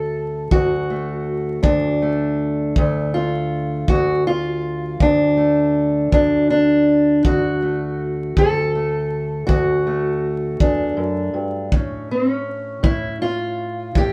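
Vinyl crackle and a moderate studio reverb place this gritty, swaggering acoustic country blues fragment a little back in the room, where a dark, woody, boxy fingerpicked parlour steel-string guitar with old strings carries the melody up front at 54 BPM in a slow 12/8, moving from D to A at 11.7 s, joined at 0.5 s by a punchy, natural kick drum with brushes.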